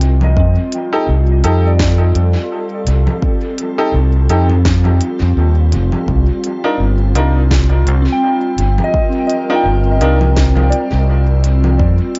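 An overdriven, punchy fingered electric bass sits up front in this deep, hazy ambient dub excerpt at 84 BPM in C dorian, anchored by a tape-warm electronic kick from 0.4 seconds and a lighter organic electronic kit of congas, crisp hats and a woody snare carrying overdrive and dub echo. Above, a soft organ-like pad holds dark, detuned sustained chords through ensemble chorus and reverb, while a gentle FM synth bell spins mellow arpeggios through chorus, phaser and analog delay. A clear, worn upright piano adds stabs with dub echo from 0.9 to 10.2 seconds over a move from F7 to Cm11, all in an echo-heavy mix with light digital ambience and a muted top end.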